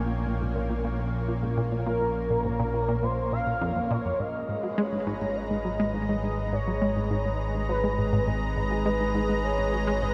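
Ambient, sequencer-driven space music with a hypnotic, cosmic mood: a thick, detuned unison pad and an evolving, ring-modulated analog drone hold the floor from the start, a tight sawtooth sequence with a filter sweep drives in at 0.3 seconds, a mellow, gliding portamento lead sings through shimmer reverb from 1.9 seconds, and a barely audible pulsing gated texture joins at 4.2 seconds as the harmony shifts, all set in a huge, wet reverb space.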